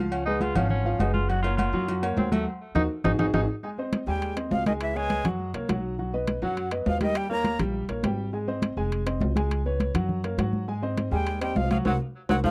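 A breathy, subtone tenor saxophone with tape echo takes the opening solo in this sunny, sophisticated Afro-Cuban jazz piece at 204 BPM in Db major, joined at 4.1 seconds by a bright, vibrato-laden jazz flute carrying the melody; both drop out at 7.6 seconds and return at 11.1 seconds. Underneath, an intimate concert grand piano with audible action noise supplies accompaniment through chords such as Db7, Gbmaj7 and Abmaj7, while a woody, growly pizzicato upright bass sits up front. Damped, high-tuned congas and ringing agogo bells and timbales fill out the percussion, with band accents and drum fills, in a dry, close 1970s-style studio sound.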